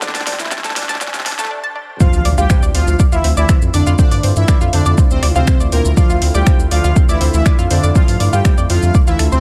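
A dry, high-pass-filtered mix carries this hypnotic, driving melodic techno fragment at 121 BPM in D minor, where an up-front deep kick and a tape-warm deep house kit of finger snaps, metallic hats, shaker and fat snare push under a round, tube-saturated analog bass, a nasal, chorused analog pluck arpeggio with dub echo and a brassy, wave-folded analog synth brass melody with tape echo. A very quiet, blurred granular cloud pad colours the Asus4 build-up, and a faint riser and impact carry on until 4.0 s. The drop at 2.0 s shifts to Dm7 and brings in a smooth soft supersaw second line and, at 2.4 s, a lush, detuned unison pad of sustained chords, with the bass, pluck, supersaw and lush pad pumping to the sidechain.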